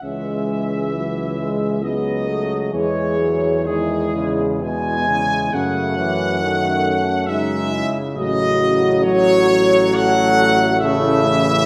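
This is a classical, hymn-like piece for brass band in C# minor, lyrical and tender, moving at a slow 61-71 BPM in 3/4 with a rubato feel. A trumpet section carries the melody up front with a warm tone, light vibrato and soft attacks. Behind it, a dark, punchy French horn section with a vintage colour sings a second line. Beneath them, a close-miked solo trombone with a clear sound and a tight, distant trombone section supply the accompaniment, while a roomy solo tuba with light vibrato holds the bass. The harmony rests on C#m before shifting to F#m at 5.5 seconds and settling on a rootless F#m7/A at 10.8 seconds. All five parts sound together throughout the roughly 11.7 seconds in a wet recital hall reverb, and the passage is cut from a longer piece.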